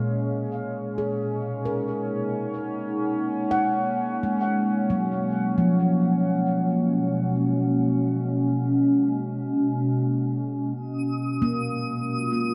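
A warbling, detuned tape-like pad sits up front with dark, nostalgic chorus-washed chords over a Bmaj7 harmony, while a meditative handpan rings out soft, mellow arpeggios through a diffuse delay and an evolving analog drone hums beneath, before a sparkling granular texture twinkles in at 11.0 seconds, all set in a serene ambient space of cathedral reverb in free time.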